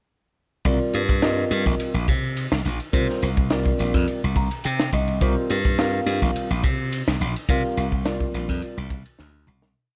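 Driving and nocturnal, this short electric jazz fusion piece sits in C minor at 105 BPM in 4/4, with a light swing on the sixteenths. A crisp acoustic kit with a high-tuned snare, punchy kick, toms, hi-hat and a fusion ride groove sits up front in a pumping small room. A glassy slap bass, electric, bright and direct, drives a syncopated riff up front alongside the drums. A clean tine electric piano, heard through its built-in speakers with subtle chorus, pushes quartal-voiced chords over a C7sus2 harmony and plays a fill at 4.1 seconds. Light reverb and small room ambience frame the groove, which fades out from 7.5 seconds as the drums close with a fill at 9.2 seconds.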